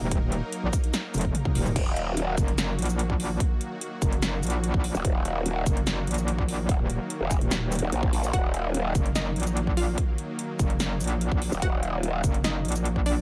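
Recorded dry, this cut from a heavy, aggressive half-time wobble dubstep drop at 146 BPM in Eb minor puts a punchy, layered electronic kick and a metallic FM wobble bass, overdriven and chorused, up front throughout, while a lush, airy supersaw pad pumps against the sidechain in the background. A big-room electronic kit adds a punchy snare, metallic hats, shaker, crash and toms, with a drum fill at 1.1 seconds. From 1.8 seconds a growling, detuned, formant-filtered bass bursts in and out, and at 8.3 seconds a lush, punchy unison pluck with a fast-attack, decaying filter shape enters, colored by cassette tape and tape echo.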